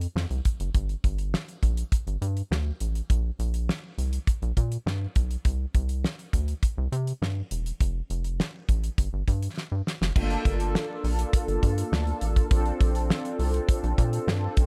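A straight 4/4 groove at 102 BPM drives this funky, danceable early-eighties boogie funk excerpt in G minor, where a rubbery, hollow square-wave bass with a resonant filter pluck and a damped, dry 70s drum kit with a fat snare and tight kick play up front from the start, a drum fill at 9.6 seconds leads into a shift to Gm7 and Bbmaj7 chords, and a mellow, round synth brass with chorus and vibrato enters at 10.2 seconds in a studio reverb.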